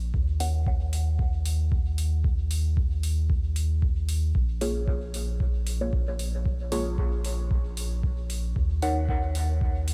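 Meditative and cavernous, this short cut from a longer dub techno piece moves in a steady 4/4 with a light swing on the sixteenths. A soft, round sub bass sits up front and pulses with sidechain pumping throughout, while a deep, overdriven analog kick drives the groove beneath metallic, overdriven hi-hats that enter at 0.4 seconds. The mellow chord stab is nasal and dark, shaped by a filter sweep and coloured with chorus, phaser and dub echo. It sounds briefly at the start, then returns at 4.6 seconds. The harmony moves between Ebm7 and Bbm7, and the drums carry a small-room character while the overall mix stays dry, with little reverb.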